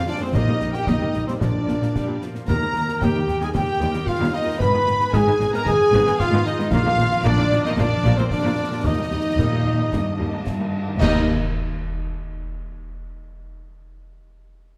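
A triumphant, adventurous heroic film score excerpt in straight 4/4. Lush bowed violins carry the melody over a second violin line, an airy flute ensemble and a distant, roomy cor anglais, while a mellow French horn section holds sustained chords, violas accompany, and cellos and double basses anchor the bass. Bright ringing harp arpeggios run through to 13.2 seconds. Dark-cymbal snare and bass drum patterns enter at 0.3 seconds alongside crisp hard-mallet timpani, and a cymbal swell arrives at 6.7 seconds, leading to a full-band accent at 11.0 seconds, all in a reverberant recital hall.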